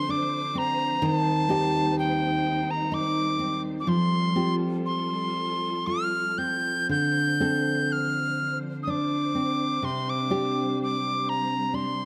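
A bright, reedy wooden whistle carries the melody up front, its pure straight tone and soft, chiffy attack sitting high between G5 and G6. This Celtic slow air moves in 3/4 at a rubato pace of roughly 57-65 BPM, with a longing, haunting mood. A full-bodied nylon-string guitar, fingerpicked with audible finger squeak, accompanies alongside it, equally up front. Further back, a rich studio string section holds bowed, expressive chords with vibrato and a gentle onset. The harmony moves through Dm7, Cm/Eb, Fadd9, Dm7 and Csus2, and all three parts play throughout this 12.1-second excerpt from a longer piece. Close, detailed microphones and light reverb keep the sound intimate and clear.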